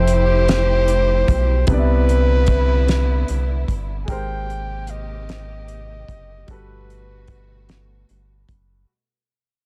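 A close-miked flugelhorn with vibrato carries the melody up front in this sensual, slow six-eight R&B piece, over a rubbery, bouncy square-wave bass, a dry, dark cloth-damped drum kit with a fat snare and tight kick, lush bowed strings with portamento, and an open grand piano in the background, the whole passage fading out under light reverb as major-ninth chords move from Fmaj9 to Gmaj9.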